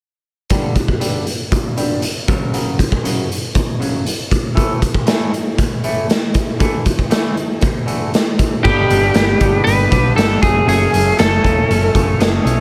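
Light small-room reverb frames this bittersweet, anthemic excerpt of quiet-loud alternative rock at 118 BPM in straight 4/4. A clean, twangy electric guitar picks lush, chorus-soaked arpeggios with tape echo over a gritty, saturated garage drum kit with a punchy kick and a pumping stone-room sound, as the chords move from G5 through F#5 and A5 to Dsus2. At 8.6 seconds the harmony shifts to G and F#madd9 as a bright, slightly broken-up lead guitar carries an up-front melody with tape echo, joined at 8.7 seconds by a dark, round hollow-body bass.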